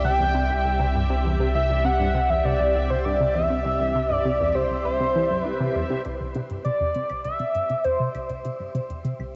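A shimmering pulse-width lead melody floats up front over lush, vintage string-machine chords, a tight, driving sequenced synth riff, a round analog bass and a bubbling, resonant filter texture in the background, everything but the bass soaked in shimmer reverb and cassette haze within a spacious hall in this expansive, cosmic stretch of ambient, sequencer-driven space music, until at 6.0 seconds the bass stops, a filter sweep opens over the sequenced synth, and clicky electronic hi-hat and claves slip in quietly with tape echo.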